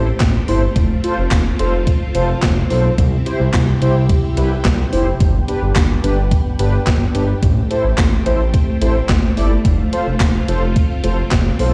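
A mellow, detuned synth brass with chorus and vibrato opens this melancholic yet driving synth-pop excerpt at 108 BPM, over soft-attack organ-like ensemble strings treated with phaser and ensemble chorus and a smooth, up-front synth bass, all moving through Am7, F, C and G. At 0.2 seconds a gated 80s digital drum machine enters with a thumpy kick, gated-reverb snare, hi-hat and handclaps, sitting prominently in the mix. The whole track sounds as if played on a big system in a bare room, with large studio reverb and a faint mains hum.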